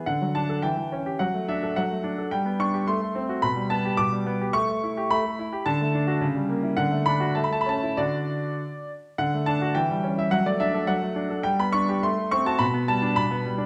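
A clear grand piano carries this classical-period sonatina on its own from start to finish, sitting up front with a smooth, vintage tone and long sustain. The mood is elegant and playful, in D major at 106 BPM in 2/4, and the tempo breathes with a gentle rubato. The harmony moves through D, G and A7 with passing diminished chords, settling on D and A around 7.4 seconds before the opening phrase returns at 9.2 seconds. The piano spans from B2 up to D6 and rings into a wet recital-hall reverb that gives the notes a soft halo. The production is dark and warm, and this short excerpt is cut from a longer piece, ending at 13.7 seconds.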